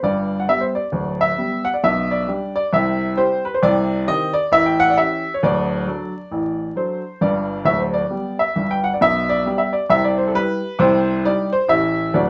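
An upright piano carries this whole stride jazz passage alone, its woody, natural tone sitting up front from the first note to the last at 12.3 seconds. The mood is playful and exuberant, with a swung eighth-note feel in 4/4 that keeps the music bouncing along at a lively clip. The piano covers a broad span, from a deep D1 in the bass up to G5 at the top. The harmony moves from G through G/B and C to a darkening C minor, then passes through A7 and D before the same sequence begins again at 7.2 seconds. The sound has a moderate studio ambience from a live performance in a single room, and a layer of vinyl crackle adds an aged character. This short piece is cut from a longer performance.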